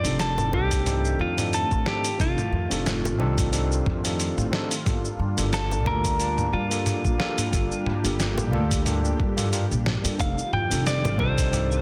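A dark, clean electric guitar carries the melody in this smooth sunset chillout excerpt, bathed in spring reverb and digital delay over a barky, overdriven tine electric piano and a lush, detuned unison pad sitting in the background with chorus and phaser. A woody pizzicato upright bass anchors the F13 and Gm7 changes, while an up-front, gritty sampler-style soul kit with a fat snare, cabasa and toms sets a light swing, joined at 0.4 s by tight, high-tuned bongos set back in the mix and at 0.5 s by a thumpy electronic kick. The whole is polished into a dense, heavily limited modern master.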